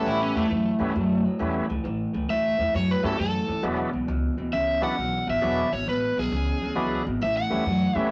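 Electric blues shuffle, laid-back and gritty, in which a crunchy, up-front overdriven guitar solos over a thick tonewheel organ with key click and a slow rotary speaker, a slightly broken-up guitar riff from a small old amp with spring reverb, and a woody, thumpy upright bass that enters at 0.1 seconds, all captured in a rough rehearsal-room recording with warm saturation across a short excerpt that moves from A9 to E9 and back.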